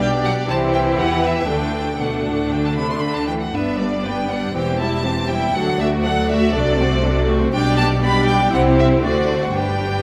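In a rubato 4/4 at 120 BPM, this graceful, cheerful fragment of a quick classical-period movement for string orchestra, tuned to A4 = 442 Hz, sets a rich, smooth first violin section singing the melody with vibrato over a second violin line, while a focused viola section fills in the accompaniment, a lush cello section sits in the background on the bass, and a clear double bass section anchors the bottom, all bathed in a wet concert hall reverb as the harmony moves from C through D and G to a closing D7.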